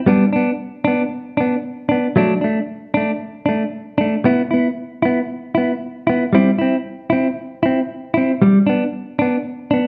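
Set in a wet, large studio reverb with the feel of a band playing live in one room, this carefree, warm highlife excerpt in G major at 115 BPM, lightly swung on the sixteenths and tuned to A4 = 442 Hz, features a clean, compressed, picked electric guitar placed up front that plays a solo from 0.1 to 9.9 seconds, ranging from F#3 to E4 over a progression of G, D5, E5, C and back to G.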